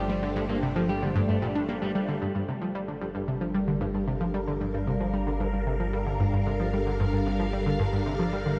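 A straight 4/4 pulse drives this mysterious, cosmic piece of sequencer-driven space music, which is cut from a longer work and rests on a single Gm7 chord. Up front, a round, detuned analog pluck riff with ring modulation, a filter sweep and cassette-tape grain sits beside swirling, vintage string-machine chords soaked in ensemble chorus and phaser, while a fat, thick analog bass holds a deep G underneath. For the first 2.1 seconds, a slightly broken-up electric guitar plays arpeggios through tape echo in the background, joined until 2.2 seconds by a very quiet, resonant bubbling texture of random filter steps, and the whole mix sits in a huge, dark reverb.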